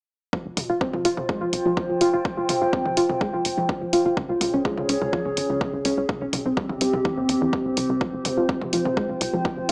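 A straight 4/4 pulse at 125 BPM drives this dramatic melodic techno excerpt in F minor, where a heavy, layered electronic kick sits up front beside the dry hi-hat and toms of a punchy analog drum machine, a dark, tight sawtooth sequencer bass pumps underneath, soft, round, detuned pluck arpeggios shimmer with chorus and analog delay, and a warbling, nostalgic, lo-fi tape-like pad hovers over an F5–Db–C–F5 progression, the mix echo-heavy with a moderate plate reverb and a small-speaker sound.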